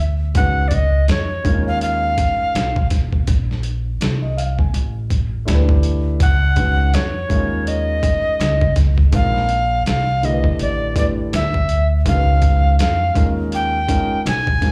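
A woody pizzicato upright bass opens this cool, smoky jazz-hop excerpt at 82 BPM with a swung feel, joined at 0.3 seconds by a gritty, overdriven sampler-style drum kit with a thumpy kick and by a dark, intimate grand piano with audible action noise and slapback echo, while an airy, close-miked tenor recorder with chiff and unsteady vibrato carries the melody over suspended chords, all heard through a club PA with small room reverb.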